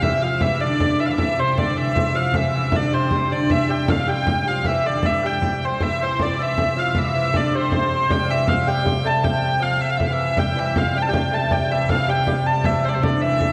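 Festive and rustic, this medieval dance in 6/8 puts a smooth, full-bodied hurdy-gurdy up front on the melody, while a delicate fingerpicked lute with doubled strings and a lightly vibrato-touched oboe in the background carry second lines, a pure, floating viola da gamba holds a ringing drone on C3, and a deep frame drum supplies the percussion, set in a long, wet church reverb.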